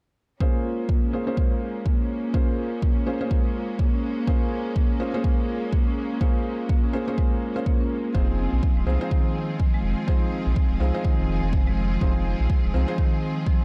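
Driving and warm, this dark afro house groove sets an up-front, deep electronic kick beneath lush, smooth symphonic strings holding sustained chords, a close-miked, dry marimba played with medium mallets spinning arpeggios through a filter sweep, and soft, felt-muted upright piano stabs with audible action noise trailing dub echo, all three pumping against the kick, until a round sine sub bass enters at 8.1 seconds as the harmony moves from Bbm7 to Fm7.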